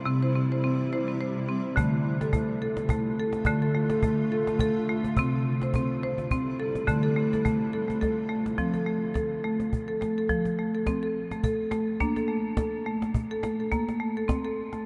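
A bright, dry marimba played with hard mallets sits up front, spinning hypnotic arpeggios through the whole 14.8-second excerpt of this meditative world piece at 106 BPM in a swung 3/4. A cajon played with soft hands and faint snares joins at 1.8 seconds, while a cloudy, detuned granular pad holds evolving sustained chords until 8.6 seconds. The harmony moves gently between C and Dm before settling on F, all set in a vast, echoing space with a long, dark reverb tail.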